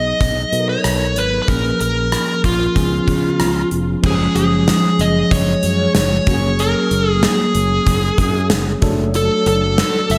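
A straight 4/4 groove at 94 BPM drives this nostalgic, glossy 1980s-style pop excerpt, with a gated drum kit entering at 0.2 seconds with tight kick, medium-tuned snare, rim clicks, hi-hat and bright crash cymbals, under a growly fretless electric bass and a clean tine electric piano heard through its built-in speakers. Up front, a dark, overdriven picked lead guitar carries the melody, dressed in slapback echo and digital delay. At 4.0 seconds a very quiet, shimmering chorused pulse-width pad adds mellow sustained chords as the harmony shifts from minor-seventh changes to F# chords, all set in a lush hall reverb that gives a big arena sound.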